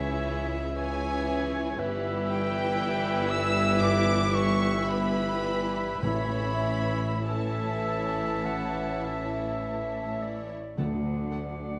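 Rubato in 4/4 at 48-60 BPM, this tender, slow romantic orchestral passage sets a lush, vibrato-laden violin section on the melody above a very quiet second violin line, with pure silver flute, mellow clarinet, cor anglais and a smooth-topped bassoon in the background, a rich, distant viola section, very quiet sustained horn and trombone chords, clear trumpet stabs, ringing fingerpicked harp arpeggios, and a dark tuba with cellos and double basses on the bass, while articulate hard-mallet timpani enter at 6.0 s, all in a recital-hall reverb over chords of C#m, Em/G, A and D.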